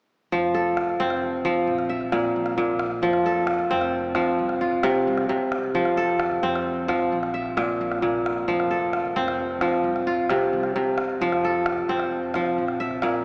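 Set in a straight 12/8 at 88 beats per minute counted in dotted quarters, this short cut from a longer piece of West African traditional string and xylophone music feels hypnotic and joyful, rooted in F major. A bright, fingerpicked kora carries the arpeggios up front, its ringing, crisp tone spanning from Bb2 to E5 and playing from 0.3 to 13.2 seconds. Beneath it, a woody pizzicato upright bass with steel strings sits in the background, keeping to the low register between F1 and F2. A deep calabash adds percussion from the back of a live room. The harmony circles between F and Csus4, broken up by brief stretches where the chord goes unnamed. A long cathedral reverb bathes the performance, captured in a church or concert hall yet heard through a small speaker sound.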